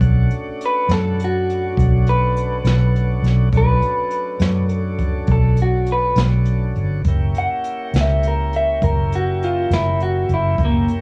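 Slow blues in a smoky, brooding 12/8, cut from a longer piece, where a slightly broken-up, picked electric guitar through a small old amp enters at 0.7 s with an up-front lead over smooth tonewheel organ chords with key click and slow rotary, a dark, round, foam-muted fingered bass, and a brushed jazz kit with a boomy kick, all captured as a home recording on cassette as the harmony moves from Bm7 to F#7b9 at 7.1 s.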